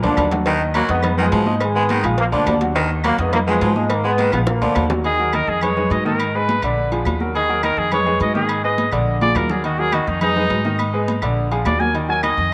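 A passionate, driving salsa excerpt at 209 BPM in Eb harmonic minor opens with a warm, tight trombone section carrying the melody through tape echo, shadowed by a raspy, gritty baritone saxophone that sounds distant and roomy on the second line. Underneath, a clear, present grand piano supplies accompaniment, and an up-front upright bass gives a thumpy, gut-string pizzicato over a cycle of Ebm, Fm7b5, Abm and Bb chords. The percussion sits in the background: high-tuned congas with a thin, vintage skin, ringing metal-shell timbales with agogo bells, very quiet woody claves, and round, low-tuned cowbell and bongos that drop out at 5.0 seconds. Drum fills mark the turns, and at 5.1 seconds the horns hand over to a bright, punchy trumpet solo with scooped notes and tape echo that rides up front to the end. A wet spring reverb with a 1.9-second decay bathes the lively groove.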